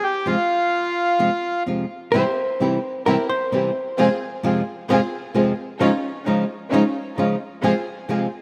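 This tense, passionate tango excerpt moves with a rubato feel in 4/4. A reedy, vintage bandoneon opens with a brief, band-limited melody that stops at 1.6 seconds, while a fingerpicked flamenco guitar supplies a warm acoustic accompaniment through to the end, its finger squeaks audible. At 2.1 seconds, a smooth, lush symphonic string section enters with bowed stabs full of vibrato, joined by a dark, clean hollow-body electric guitar whose picked, compressed second line runs until 4.2 seconds. The harmony circles through F minor, C, D-flat add nine and F minor over C. Every part sits up front in a rough home demo mix, with the bandoneon carrying the most weight. A moderate hall reverb lends the whole passage a spacious glow.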